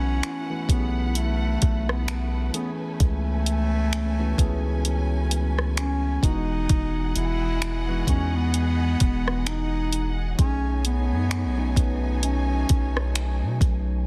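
This contemporary R&B piece moves at a slow 65 BPM in 4/4 with a swung sixteenth-note feel, its mood longing and moody. A mellow bass clarinet carries the solo melody in a classical style, sitting present in the mix with a digital delay. Beneath it, a clean tine electric piano heard through a combo amp plays accompaniment treated with a phaser, while a distant, lush string section holds bowed chords full of vibrato and portamento, pulsing with sidechain pumping. A deep, sine-like 808-style bass with a fast attack and long decay sits up front alongside a soft, produced electronic drum kit of finger snaps, hi-hat, kick drum and rim click, which enters at 0.2 seconds and adds soft clipping on the snare. The harmony drifts from B7sus4 through Amaj9/C# and Emaj9 to B13 in a dry, dense, heavily limited modern master, and the passage is cut from a longer piece.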